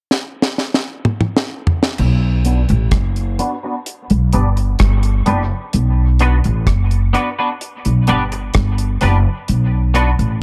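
A dry, up-front reggae drum kit opens this meditative, heavy dub reggae excerpt with a fill across its high-tuned snare, tight kick, toms and cymbals, then a woody pizzicato upright bass enters at 2.0 seconds and a bright, clean, picked semi-hollow electric guitar follows at 2.5 seconds, colored by ensemble chorus, dub echo and a sweeping low-pass filter as the harmony alternates between Bm and G in a studio reverb.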